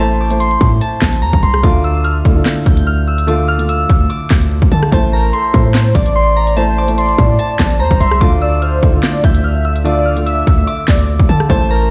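A hard-hitting 808-style bass sits up front with a punchy, heavy sine tone and a noise layer, anchoring this cold, menacing drill excerpt at 146 BPM in a half-time feel, beside an electronic drum kit of hard-clipped kick, sharp snare, crisp hi-hats, handclaps and rim clicks that enters at 0.3 seconds. A ringing, fingerpicked concert harp carries the melody through a low-pass filter and digital delay over a dark, worn grand piano with long sustain, the harmony moving between A minor and D minor. At 5.1 seconds a velvety, detuned synth lead adds a second line with chorus, tremolo and vibrato, all set in a stone room reverb with vinyl crackle, as if played on a big sound system in a bare room.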